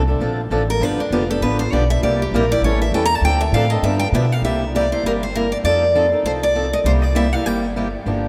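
Drenched in the long, cathedral-like reverb of a vast, echoing space, this lively, swinging fragment of acoustic string swing in C mixolydian moves at a brisk 199 BPM with a light swing on the eighths. A woody, thumpy upright bass with gut strings anchors the low end while a boxy swing-style acoustic guitar supplies the accompaniment. A bright steel-string acoustic guitar with fresh strings and audible finger squeak carries the melody, taking a solo through the first 4.4 seconds over changes that start on Dm7 and G7 before the second section settles around C7 and F7.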